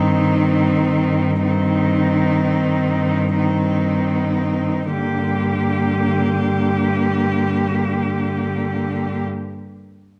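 Classical and lyrical, this yearning, solemn excerpt for cello ensemble in G minor drifts in a rubato 12/8 at roughly 24-40 BPM, slowing through its first 4.9 seconds over Cm/G before settling on Gm, with four cellos each bowed with vibrato: a clear, smooth voice carrying the melody, a focused, distant second line, a rich, close accompaniment, and an even bass held on G2 up front, set in a reverberant recital hall with a dark production.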